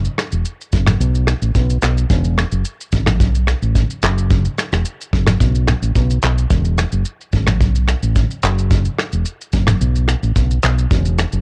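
A straight 4/4 groove at 109 BPM drives this short afrobeats cut, which is taken from a longer piece and sets a sultry, hypnotic mood. A soft brush drum kit plays throughout its 11.4 seconds, built from finger snaps, handclaps, kick drum, rim click, shaker and toms. The kit has a smooth, small-room sound with a tight kick and a rolled-off top, and it carries the hazy colour of cassette tape. Beneath it, a fingered electric bass holds the low end between E1 and B1 for the whole passage, its tone round, punchy and shadowy. Both parts sit up front in a dry home recording on cassette, so the pairing feels close and intimate.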